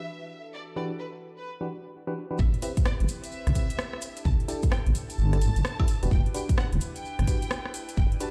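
A deep, dark wobble bass sits up front in this skippy, soulful two-step garage excerpt, its detuned sawtooth-and-sine tone arriving with the drop at 2.4 seconds alongside a punchy, tape-warm electronic kick. From the opening, a lush bowed violin section sings an expressive melody with vibrato and dub echo, while a smooth analog pad holds sustained chords that pump against the sidechain. At 0.8 seconds a glassy FM electric piano begins playing stabs with a bell-like attack, coloured by chorus, low-pass filtering, dub echo and gritty 12-bit sampler crunch. A house kit of metallic hi-hats, rim clicks and woodblock joins at 2.5 seconds over the swung groove, with a grainy, mellow tube shaker tucked in the background. The harmony moves from Em7 through rootless Am9 and C6 before returning to Em7, and the whole mix sounds as if played on a big sound system in a bare stone room.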